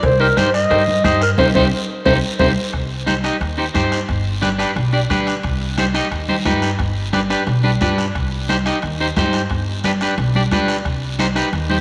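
Cumbia in C harmonic minor, this fiery, passionate excerpt moves at 177 BPM in a straight 4/4. A dark, smooth-topped clarinet in classical style carries the melody only for the opening 2.5 seconds, touched by slapback echo, while an up-front, twangy electric guitar at the edge of break-up plays fingered accompaniment throughout, and a clean electric guitar fill appears briefly between 1.7 and 2.7 seconds. Underneath, a woody, thumpy pizzicato upright bass anchors the changes between Cm and G, joined by a soft-beater bombo in the background, a raspy guiro that sounds distant in a large room, and very quiet ringing cowbell and timbales. Bright, compressed congas with a thin skin enter at 0.4 seconds and sit behind the band. A band accent and drum fill close the opening section before the groove settles into a longer passage that alternates Cm and G, all bathed in a moderate plate reverb.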